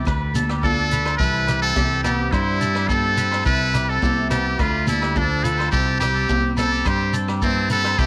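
A muted trumpet sits up front in this sunny, danceable highlife guitar band excerpt, its brilliant, buzzy tone carrying a jazz-style solo melody with light vibrato and scooped notes from 0.6 seconds. A raspy, gritty tenor saxophone enters at the same moment with a second line lower in the background. The band moves at 106 BPM in a straight 4/4 in C major over the chords Dm, C and Am/C. A twangy, clean electric guitar plays bright arpeggios with a subtle chorus, while a full-bodied jumbo steel-string acoustic guitar picks accompaniment further back, and a fingered electric bass adds a round, punchy low end. A vintage drum kit with a rolled-off top keeps time on hi-hat, kick and rim click, joined in the background by ringing agogo bells, high-tuned congas played with hard hands, and a grainy, mellow shekere. Light reverb and small-room ambience surround the whole band.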